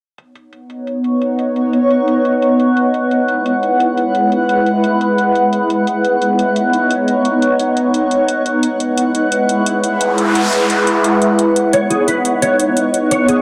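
A metallic electronic hi-hat sets a straight 4/4 pulse at 174 BPM, sitting low in the mix with a tape-warm, filtered tone that sounds re-recorded in a small room. This is a lush, melancholic liquid drum and bass excerpt in C# minor, cut from a longer piece. From 0.8 seconds a shimmering, ethereal pad sits up front, holding slow-attack chords that alternate between C#9sus4 and F#9sus4, its dark, granular texture coloured by chorus, phaser, an octave-up shimmer and a gritty vintage sampler edge. An electronic noise sweep emerges from the bed at 10.0 seconds. At 11.7 seconds a mellow, clean electric guitar enters up front with compressed, fingered arpeggios, thickened by ensemble chorus and delay. The whole excerpt is bathed in a lush hall reverb that gives it a spacious, drifting atmosphere.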